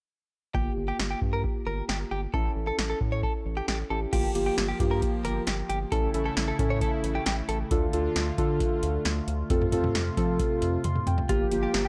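A nocturnal, cool synth-pop passage at 134 BPM opens at 0.5 seconds with muted, felt-like synth keys under a filter sweep, a round, deep analog bass, an electro drum machine up front with a punchy snare and metallic hats, and a clean, direct-recorded electric guitar adding a picked second line through subtle chorus and analog delay. At 4.1 seconds a brassy, detuned sawtooth pad with chorus and vibrato enters with sustained chords as the harmony moves through Gm7, A, Dm and F. A short keys fill at 10.6 seconds and a drum fill at 10.8 seconds lead back to Gm7, all in a dry, gritty hardware sound.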